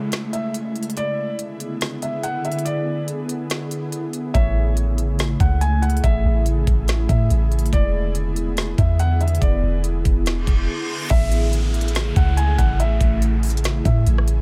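An airy, ethereal pad with ensemble chorus and sidechain pumping opens this dreamy, blissful cloud-rap excerpt in A major at 142 BPM in a half-time feel, joined by a downlifter, crisp-hatted trap drums with a knocking kick and woody snare, and a soft, felt-muted upright piano melody with audible action noise, tape echo and a low-pass filter, before a deep, round 808-style bass and a ringing background handpan enter at 4.3 seconds, with a reverse cymbal rising into a brief break at 10.7 seconds.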